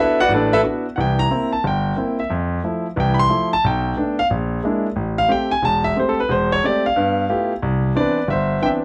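A clear, intimate concert grand piano carries this swinging, smoky jazz excerpt on its own, spanning E1 to C6 with deep bass, long sustain and audible action noise, placed up front in a dark production. At a brisk 180 BPM in 4/4 with a swung eighth-note feel, the harmony moves from D6/9 through C7, Fmaj7, Bb7#11 and Am7 to G13, settling on Cmaj9 as a new section begins at 7.6 seconds. A moderate club reverb surrounds the polished piano tone until the cut at 8.8 seconds.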